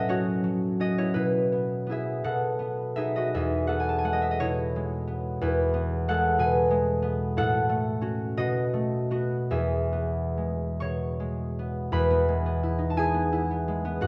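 Set in a wet recital hall with a reverb tail of 1.6 s, the recording has a dark, warm production that wraps a single instrument in soft ambience. A solo concert harp carries this peaceful, serene classical fragment, cut from a longer piece, sitting up front with a fingerpicked, ringing tone across a range from E2 to C#6. In E major and 6/8, the music moves freely with rubato at roughly 45-63 BPM in dotted quarters, unhurried and calm. The harmony drifts from F#m/A through Bsus4 and B before settling on E at 3.4 s, then returns through F#m/A and B7 to resolve on E again at 9.5 s. A new passage begins at 11.9 s and runs briefly until the fragment ends at 14.1 s.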